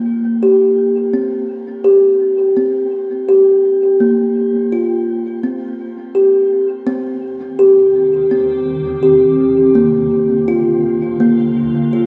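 A woody, fingertip-plucked kalimba sits up front, ringing out arpeggios through a diffuse ambient delay and shimmer reverb in this hypnotic, meditative world piece with a light swing. At 7.9 seconds a blurred, evolving granular cloud pad enters with a slow attack, holding sustained chords under the kalimba, its detuned unison tones carrying their own built-in reverb and shimmer. The recording sits in a wet stage reverb with a touch of small-room ambience, colored by worn cassette tape whose warbly pitch drift lends it an aged character.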